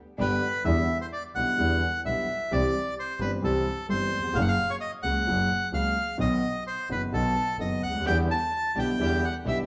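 A rubato 4/4 tango at 130 BPM in E minor, this dramatic, melancholic passage, cut from a longer piece, moves from Em7 through C, F# and B back to Em7. A reedy, airy bandoneon carries the melody up front over an intimate vintage grand piano with audible action noise and deep bass, while a single bowed double bass adds a clear, focused line with vibrato. A lush, distant string section plays brief bowed stabs at the start and again from 8.0 seconds, with the band playing live together in one room full of wet stone reverb.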